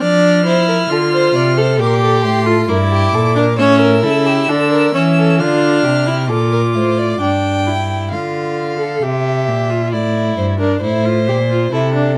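A string quartet begins together in this lively, joyful baroque-style fugue excerpt. A distant first violin sings a high, expressive melody with vibrato and portamento, while a close second violin with a soft attack carries a warm second line beneath it, and an up-front viola and cello add a rich, smooth, even accompaniment and a bowed bass with vibrato. The first violin stops at 7.2 s as a new section begins, leaving the lower three parts to continue in light reverb, captured by close, detailed microphones.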